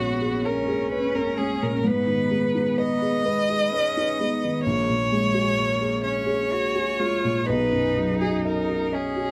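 A hopeful, tender neoclassical passage for piano and strings opens with all four parts sounding together from the start, a short excerpt cut from a longer piece in a lilting 6/8 with a free, rubato feel. A solo bowed violin carries the melody up front, its tone rich and expressive, colored by vibrato and gliding portamento between notes. Beneath it a single cello sings a smooth, even second line with a smooth top and its own gentle vibrato. A felt-muted upright piano supplies the accompaniment, its dark, intimate timbre thick with felt and close enough that the mechanical action noise is audible. In the background, a chorused pulse-width pad holds shimmering, retro-tinged sustained chords with a soft attack, while the harmony moves from F#add9/A# to G#m and back before arriving on B at 7.5 seconds, all set in a moderate studio ambience.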